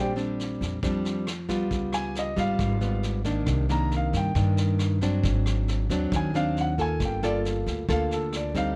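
A straight 4/4 bossa nova groove comes from a vintage brush kit with a punchy kick, rim clicks and a medium-tuned snare, its rolled-off top entering at 0.2 s. Up front, a full-bodied, fingerpicked nylon-string guitar with audible finger squeak comps through lush chords such as Bb69, C#7#11 and Cm9, while a woody, thumpy upright bass anchors the low end. Over them a smooth, vintage-toned grand piano carries the melody as a solo for the whole of this intimate, closely miked fragment of a longer piece, heard with little reverb.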